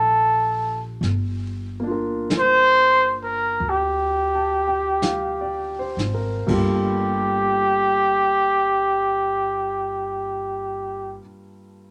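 A smoky, melancholic jazz ballad in G minor, this short excerpt moves at a slow 40-49 BPM in 4/4 with a swung eighth-note feel, easing into a slowdown over its first 6.5 seconds. A trumpet carries the melody up front, its tone soft in attack and touched with vibrato, yet heard at a distance with plenty of room around it. Beneath it, a concert grand piano supplies intimate accompaniment with deep bass, long sustain and audible action noise, while a woody, thumpy upright bass played pizzicato anchors the low end. A jazz kit played with brushes joins at 1.0 seconds and drops out at 7.2 seconds, its airy sound marked by dark cymbals and a boomy kick. The harmony rests on Gm7 before shifting to Gm9 at 6.5 seconds, all set in a moderate club reverb that suits the late-night atmosphere.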